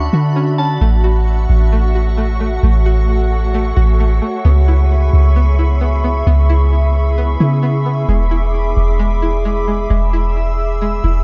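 A dark, dreamy digital ambience opens this floating half-time hip hop excerpt in A major at 132 BPM, where a crystalline, warbling synth bell with chorus, tremolo and delay sounds a brief melody only in the first 0.8 seconds. Beneath it an ethereal FM pad holds sustained chords through Dmaj7, A6, C#m7 and E7, while a twangy, string-like resonator pluck with chorus and delay traces arpeggios. A round, deep 808-style bass sits up front, and an airy, breathy wind-like noise texture drifts in the background until 9.9 seconds.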